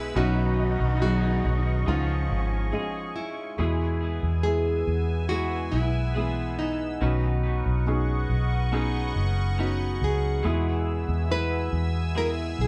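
Pop ballad at 70 BPM, hopeful and emotional, built on Badd9, C#add9 and E chords, with a fingerpicked nylon-string guitar carrying the full-bodied classical melody, finger squeak and all, over a soft felt-muted upright piano whose action noise gives it an intimate feel. A round, punchy, foam-muted electric bass sits up front, while a bright, twangy twelve-string electric guitar plays compressed arpeggios with spring reverb in the background and an evolving detuned sawtooth pad holds slow-attack chords through chorus. A distant, dark cello section adds an expressive bowed second line with vibrato from the start until 3.6 s, a brief break falls between 2.7 and 3.6 s, and the band sounds as if playing live together in one large studio room.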